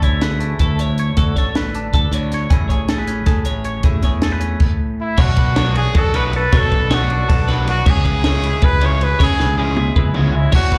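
A bright, playful math rock and midwest emo excerpt in 7/8 at 314 BPM, heard live through a club PA, opens with a twangy electric guitar carrying spring reverb and slapback echo, a bright twelve-string electric guitar playing arpeggios, a growly, up-front fingered bass and a compact cocktail kit with a high-tuned snare, punchy kick and rolled-off top, moving from Dmaj9 to Amaj7. At 5.0 seconds a clear, distant trumpet with light vibrato takes the melody through slapback echo and analog delay, joined at 5.2 seconds by a dark, overdriven semi-hollow guitar riff sitting in the background as the chords shift to Bm9 and C#m7. A drum fill arrives at 9.4 seconds before the cut.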